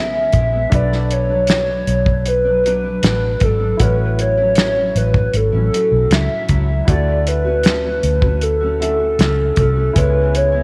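Dreamy and laid-back, this bedroom-pop take on indie pop drifts along at 78 BPM in A major, a short cut from a longer piece. Up front, a warbling, detuned synth lead built from square and sawtooth tones carries the melody with a fast attack and sustained notes, soaked in lush chorus and tape echo for a nostalgic, vintage glow. Beneath it, a full-bodied, fingerpicked nylon-string guitar adds deep classical colour through its own chorus and vibrato effect, while a woody upright piano with audible action noise and long sustain sits in the background under a cassette-tape haze. A dark, round, foam-muted fingered electric bass and a cloth-damped, thuddy drum kit with a fat snare, tight kick, hi-hat and rolled-off top hold the groove close to the listener, the drums entering at 0.3 seconds. The chords glide from C#m7 through Bm7, A6 and Dmaj7 before returning to C#m7, all wrapped in light reverb and small-room ambience for an intimate, hazy feel.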